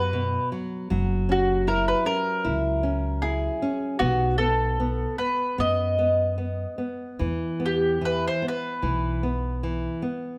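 The rhythm moves freely in a rubato 4/4 around 76 BPM, giving this fado-style ballad a longing, mournful sway. A picked mandolin carries the melody between F#4 and D#5, its double strings lending a warm, round voice. Beneath it, a fingerpicked nylon-string guitar supplies full-bodied, deep classical accompaniment, while a pizzicato upright bass with steel strings adds a woody, growly, thumpy low end. All three acoustic parts sit up front in a light reverb, with the mandolin slightly louder than the others. The harmony moves from B5 to F#7 at 0.9 seconds, settles on B at 4.0 seconds, and shifts to E5 at 7.2 seconds in this short passage cut from a longer piece.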